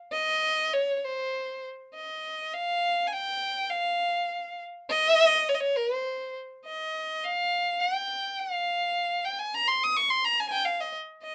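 Indian classical music, solemn and meditative, in which a single bowed violin plays solo and up front at 103 BPM in 4/4. Its dark, smooth tone carries vibrato and stays even from C5 to Eb6, the tempo speeds up across the 11.3-second excerpt, and the whole sits in moderate small-room reverb.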